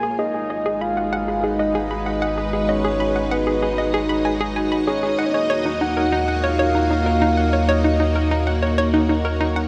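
A lush, vintage string machine sits up front, holding sustained chords through its ensemble chorus as this expansive, mysterious stretch of ambient, sequencer-driven space music moves from Abm7 to Ebm7 at 5.2 seconds. Around it, a hollow, bouncy square pluck repeats a riff and a soft, octave-layered synth lead carries a dark, round melody until 8.9 seconds, both treated with chorus and tape echo. Beneath them a deep, nasal analog bass fades in across the whole 9.7 seconds, all of it bathed in a huge, wet reverb in this short section cut from a longer piece.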